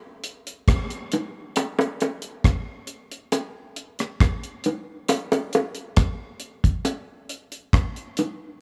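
A deep reggae drum kit opens at 0.2 s, its hi-hat, tight kick drum and rim click sitting up front with a dry, dark tone and a rolled-off top. At 1.1 s, high-tuned bongos join, struck with hard hands and just as close, adding a tight acoustic edge above the kit's smooth weight. The tempo is an unhurried 68 BPM in a straight 4/4, giving the reggae groove a meditative, serious mood. A light reverb and small room ambience frame the recording. Both parts play together until 8.4 s in this brief portion taken from a longer piece.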